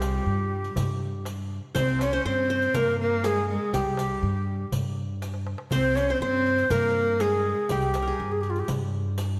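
A straight 4/4 pulse at 121 BPM, carried by the soft-handed clay darbuka in the background, the dark jingles of the riq and a woody pizzicato upright bass up front, underpins this melancholic, hypnotic Arabic maqam ensemble fragment in C maqam hijaz, where a breathy, reedy end-blown ney leads the melody over a biting, vibrato-laden bowed cello and a bright-edged, plectrum-plucked qanun, with a brief drum fill at 5.2 seconds and a moderate scoring stage reverb around the ensemble.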